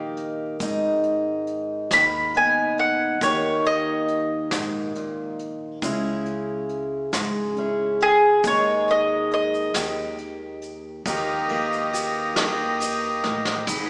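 Acoustic folk in a slow 6/8 at 46 BPM, counted in dotted quarters, this haunting, reflective excerpt moves through G#m, D# and C#m harmony in a deep, reverberant church or hall space with a small-speaker character. Up front, a woody, double-strung mandolin carries the melody as a picked solo until 10.2 seconds, over a full-bodied dreadnought steel-string guitar fingerpicking the accompaniment. Beneath them, a thumpy pizzicato upright bass on gut strings sits in the background, while a distant, roomy brush kit with a punchy kick and medium-tuned snare keeps a soft pulse alongside a grainy, mellow tube shaker. At 11.1 seconds a close-miked, dry harmonium enters with reedy, nasal, breathing sustained chords. A short drum fill arrives just before the clip ends at 13.9 seconds.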